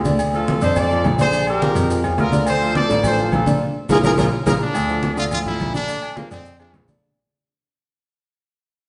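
A warm, loosely played horn section carries the melody up front in this sunny, joyful salsa cut from a longer piece, moving at 211 BPM over a clear grand piano holding the bass line, a worn, woody and slightly detuned upright piano, damped low-tuned congas, ringing agogo bells and timbales in the background, and grainy maracas, all moving through D minor and B-flat chords. After a band accent from 3.6 seconds and a drum fill from 4.0 seconds, a bright, punchy trumpet with vibrato takes over the melody at 4.6 seconds as the music fades out. The band plays live in a stone room with a wet reverb and a slightly dull top end.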